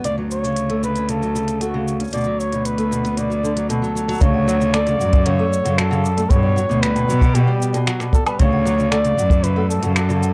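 Warm and pastoral, this folktronica passage sets a boxy, fingerpicked parlour guitar playing arpeggios with tape echo and a filter sweep through the first 4.2 seconds, over a clear, close, bowed cello bass with vibrato and a small-room, overdriven electronic kit of finger snaps, smooth hi-hat, shaker and woodblock, while an up-front flugelhorn carries a jazz-style melody with light vibrato, scooped notes and tape echo, and from 4.2 seconds a boomy acoustic kick joins a delicate, slightly out-of-tune music box tinkling with delay in the background, all wrapped in dark studio reverb.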